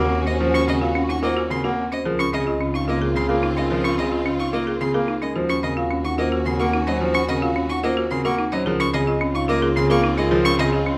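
Dry, woody marimba arpeggios sound together with a ringing vintage vibraphone melody in this urgent yet meditative minimalist pattern piece in Db major at 109 BPM in 3/4, alongside a brilliant grand piano accompaniment, a rich bowed violin adding arpeggios from 0.3 seconds, a mellow clarinet second line and lush sustained strings in the background, and a focused bowed double bass, all in a moderate large-studio reverb, cycling between Ebm9 and Dbmaj9 in a passage cut from a longer piece.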